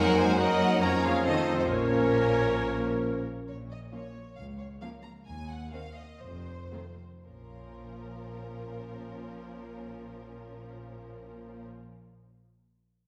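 Heard from further back in a wet scoring-stage reverb, this stormy, restless fragment of a quick classical-period orchestral movement in 4/4 moves with a rubato feel and slows between 2.6 and 7.3 seconds. At the start, a pure, wooden baroque flute, a warm oboe and clarinet, a mellow bassoon, punchy French horns holding sustained chords and dark, tight trumpet stabs fill out the texture before they fall away after about 3.3 seconds. Carrying on through 11.7 seconds are a rich, focused violin section with the vibrato melody, a second, lush, very quiet violin line with expressive portamento, smooth and distant violas, clear cellos in the background and intense double basses underneath.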